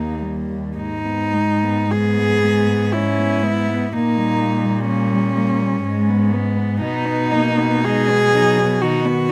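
A single cello carries the melody up front, its airy sul tasto bowing and light vibrato giving this brief, rubato classical fragment for cello ensemble in 3/4 a yearning, solemn cast. Beneath it a dark, smooth-topped cello sings a second line, a woody cello sits in the background with accompaniment, and a warm bass cello grounds the harmony, all four playing throughout. Close, detailed microphones with light reverb keep the melody intimate.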